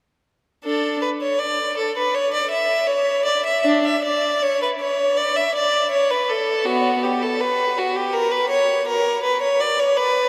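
A clear, up-front solo violin carries this short passage cut from a baroque-style suite movement for unaccompanied violin, set in D major at about 81 BPM in 4/4 with a rubato feel. The single bowed player keeps an even, smooth tone shaded with vibrato, moving between B3 and E5. The mood is dance-like and flowing, with the line unfolding freely across the bar rather than marking strict time. The violin sounds from 0.6 to 10.3 seconds, and a huge, wet reverb with a decay of 7.4 seconds places it in a vast, echoing space. Tuning sits slightly high, at A4 = 443 Hz.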